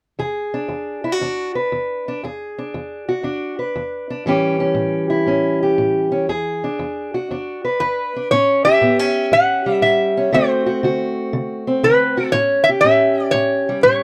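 A loping swung feel at 119 BPM in 4/4 sets the pace for this soulful, laid-back acoustic country blues excerpt, settling into A mixolydian from 8.3 seconds. A fingerpicked steel-string parlour guitar carries the accompaniment from the opening moments, its dark, boxy tone sitting up front as it moves through E7, A7 and back to E7. At 7.8 seconds a metal-body resonator slide guitar takes the melody, its metallic, nasal voice played with fingerpicks and ringing close in the mix. The second passage shifts through A7, D7 and A7 beneath the slide line. The dry, close 1970s-style studio sound carries a moderate booth ambience, keeping both guitars intimate and present.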